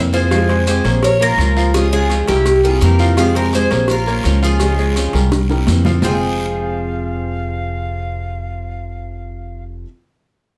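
Fingerpicked flamenco guitar, bright piano arpeggios with audible action noise and a thumpy, woody upright bass open this danceable, sultry Cuban son and guajira cut from a longer piece, with a metallic, double-strung Cuban tres soon carrying the melody through plate reverb. A breathy jazz flute with vibrato and a crisp chiff adds a soft second line, while raspy guiro, grainy maracas and round, low-tuned cowbell and bongos sit in the background until they drop out at 6.1 seconds, just after a drum fill. The minor-key chords cycle twice before the music moves into a new section at 6.0 seconds, and the bass stays up front in a moderate studio ambience.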